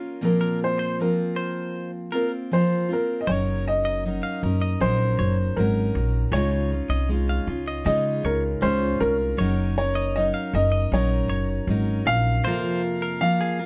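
Dry and close, this short cut from a longer acoustic pop piece moves at a relaxed 78 BPM with a wistful, tender mood. A woody upright piano carries the melody over a full-bodied, picked steel-string acoustic guitar, while a bright, twangy clean electric guitar, recorded direct and compressed, adds arpeggios from 0.4 seconds. Pizzicato upright bass enters up front with a warm tone at 3.3 seconds as the second section begins, and the harmony moves through Gb6 and Dbadd9 before reaching Fsus4.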